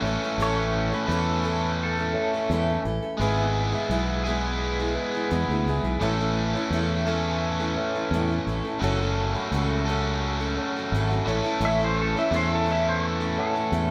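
A straight 4/4 pulse at 86 BPM drives this open-road folk and heartland rock excerpt in A major, with a round, up-front fingered bass and a biting, double-tracked overdriven guitar riff anchoring the groove. Bright picked steel-string acoustic guitar adds jangle, while a mellow reed electric piano shimmers with fast tremolo in the background and slips in short fills. A twangy, compressed pedal steel with slide and volume swells appears near the start and returns at 11.7 s, all set in a moderate large-studio reverb that captures a band playing live in one room.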